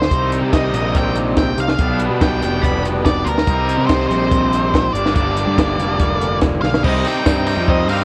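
Moody and bittersweet, this short indie rock passage, cut from a longer piece, drives along at 143 BPM in a straight 4/4 in C minor, moving through Cm7, G and Gm. An overdriven, double-tracked electric guitar riff sits up front beside a compact cocktail drum kit with a punchy kick, a high-tuned snare, hi-hat and crash, its top end rolled off for a dark, smooth feel. A fuzzed, picked electric bass adds a gritty low end, while an octave-fuzz lead guitar carries the melody with distortion and a slapback echo. A very quiet, lush string section holds bowed chords with vibrato from 0.1 seconds, and after a drum fill at 6.6 seconds a mellow, inharmonic FM synth chime with ensemble chorus rings in the background from 6.8 seconds, joined by a brief jingle of tambourine at 7.3 seconds. The whole mix carries light small-room reverb and the worn, warbling pitch drift of old cassette tape.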